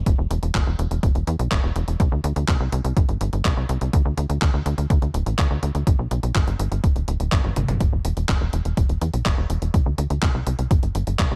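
A straight 124 BPM pulse in 4/4 drives this bittersweet, nostalgic italo disco passage in E minor, cut from a longer piece, where a thumpy, overdriven electronic kick leads the mix beside a tight, punchy sequencer bass with a nasal, plucky sawtooth-and-square tone and digital delay, while a detuned 8-bit drum machine adds gritty handclaps, hi-hat and toms through gated reverb, and a drum fill arrives at 7.3 seconds, all set in a dry, close sound.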